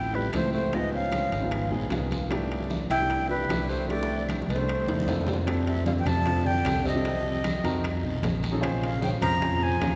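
Flute, tenor saxophone, grand piano and electric bass open together in this sophisticated, danceable Afro-Cuban jazz excerpt at 152 BPM in 4/4, with congas, bongos, claves, guiro and timbales joining within the first second. The breathy flute carries the melody up front over a growly, punchy bass, while a dark, whispered tenor with vibrato and scooped notes plays a second line in the background, and the intimate piano, its action noise audible, accompanies as the music moves from C major to F major at 5.5 s. Raspy guiro, ringing metal-shell timbales, tight high bongos and distant congas sit beneath a drum fill from 3.9 s, and a long cathedral reverb surrounds the ensemble.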